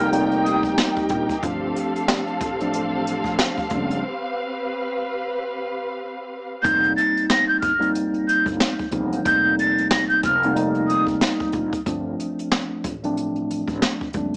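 Soulful and warm, this swung boom-bap hip-hop excerpt moves at 92 BPM in F mixolydian, shifting between F9sus4 and G9sus4 chords. A mellow tine electric piano with a cassette-tape tint plays throughout over woody, growly pizzicato upright bass and an airy brushed kit with a boomy kick and high-tuned snare, while a dark, lush bowed string section holds chords until 6.6 seconds, with a break from 4.0 seconds. A breathy metal flute with vibrato and tape echo carries the melody, heard briefly at the start and then from 6.6 to 11.1 seconds, all in moderate reverb with a small-speaker sound.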